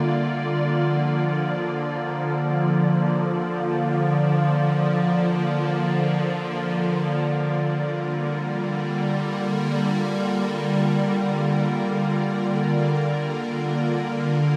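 Awash in a wet, echo-heavy chamber reverb, this serene, peaceful ambient excerpt in free time rests on an up-front evolving wavetable pad whose bright, detuned, morphing sine chords glow through ensemble chorus, moving from Bb to Gm7 at 7.1 s, while a tense, string-like bowed drone with vibrato and a noise layer enters in the background at 5.6 s and sustains to the close at 14.6 s.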